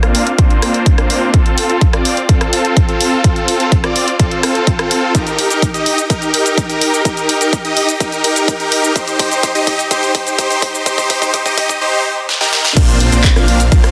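Huge, bright supersaw chords lead this euphoric, anthemic festival progressive house excerpt at 126 BPM in Bb major, their detuned sawtooth unison pumping with the sidechain, touched by a low-pass filter and digital delay, and swept by a filter across the whole build-up. Beneath them, a big-room dance drum kit of cabasa, crash cymbal, handclaps, hi-hat, rim click and a massive, soft-clipped snare drives the straight 4/4 feel, with drum fills marking the climb. A punchy, overdriven electronic kick sits up front from 0.4 seconds onward. The chords move from Bbadd9 through F, Eb and Cm before returning to Bbadd9 as the drop lands at 12.8 seconds. There a thick, saturated detuned saw bass enters on a low Bb, mellow and chorused, pumping with the sidechain. The dense, heavily limited master is bathed in a lush hall reverb and digital ambience.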